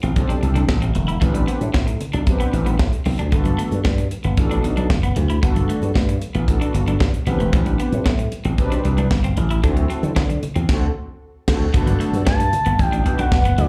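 Heard through a venue's PA with a touch of club reverb, this feel-good, danceable slice of early-eighties boogie funk, cut from a longer piece, rides a growly, envelope-filtered slap bass and a tight, polished drum kit with a high-tuned snare up front, while a slightly broken-up electric guitar riff shimmers with lush chorus and slapback echo, round, detuned synth brass fills in with plate reverb, bright damped congas sit in the background, the band hits an accent at 10.7 seconds, and a smooth, vibrato-laden synth lead takes the melody at 12.3 seconds.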